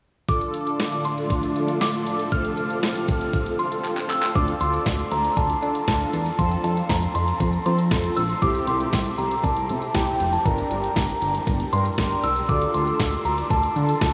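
A dreamy, reverb-soaked mix with a huge ambient tail frames this upbeat yet wistful synth-pop excerpt at 118 BPM in a straight 4/4, moving through Dm, F, C and Gm. Up front, a glassy, crystalline FM synth bell carries the melody high in its range, its bright, decaying tones dressed in chorus, diffuse ambient delay and shimmer reverb. Beneath it, a mellow, round synth brass plays a dark, evolving accompaniment with detuned sawtooth tone, vibrato, chorus and phaser. For the opening seconds a vintage string machine adds full, soft-attack cello chords with ensemble chorus, ending at 4.3 s as a drum fill leads into the next section. From 4.4 s a retro, glossy chorused synth bass joins with plucky, pulse-width-modulated lines. Throughout, a clean 12-bit digital drum machine sits forward in the mix, with a thumpy kick, a medium-tuned snare, hi-hat and handclaps given an overdriven edge.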